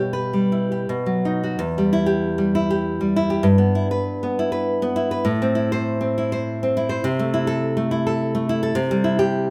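A tender, sunny romantic piece for solo classical guitar in E minor and 3/4, moving with rubato between 80 and 108 BPM, where an up-front, full-bodied nylon-string guitar is fingerpicked from E2 to C#5 with audible finger squeak, drifting from Em/B and B into Em, Em/G, Am, Am/C and finally C at 8.8 seconds, all cradled in moderate recital hall reverb in this short passage cut from a longer work.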